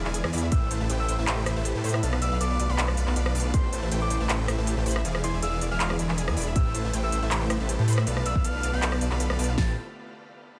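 A half-time 4/4 groove drives this dreamy, lush future bass drop, cut from a longer piece and set in a light reverb. An overdriven big-room dance kit supplies crisp hats, handclaps and rim clicks, while a punchy, up-front pop kit adds kick, fat snare and hi-hat in brief hits before playing through from 6.6 s. A huge, detuned supersaw riff and a thick, saturated saw bass with chorus pump under sidechain over a very quiet, breathy pad holding slow-attack chords, and in the background a bright, wave-folded unison pluck spins arpeggios while a dark, round octave-layered lead with vibrato carries the melody, both pumping and trailing dub echo over chords that move between minor sevenths, half-diminished and dominant flat-nine colours.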